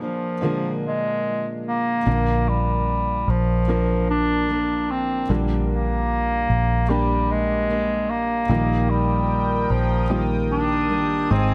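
Pop at 75 BPM in Eb major, this short passage from a longer piece carries a tender, emotional mood in a straight 4/4 feel. A clear, vintage-toned bass clarinet sings the melody up front in a classical style, set over a felt-muted upright piano whose soft, mellow accompaniment brings an intimate sound along with audible action noise. Beneath them, a fingerpicked steel-string acoustic guitar plays full-bodied arpeggios in the background. At 2.1 seconds a vintage muted fingered electric bass enters, dark, round and punchy, sitting up front as the harmony moves from Bb7 to Bb. At 8.5 seconds a chorused pulse-width pad arrives with shimmering, retro sustained chords over Eb/Bb, softly framing the close. Light reverb and a small room ambience give the whole a close, gentle space.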